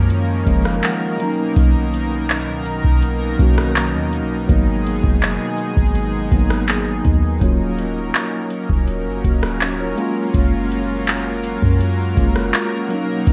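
A dry, rough home-demo mix carries this longing, sensual contemporary R&B fragment at 82 BPM, where a booming analog drum machine sits up front with a deep kick, metallic hi-hat, handclaps and rim clicks, a clean sine-toned 808-style bass adds dark low end, a mellow tine electric piano plays a fill in the first 1.6 seconds before accompanying through Gbmaj7, Bmaj7, Abm7 and Ebm7, and a lush, detuned sawtooth pad warbles with chorus beneath them.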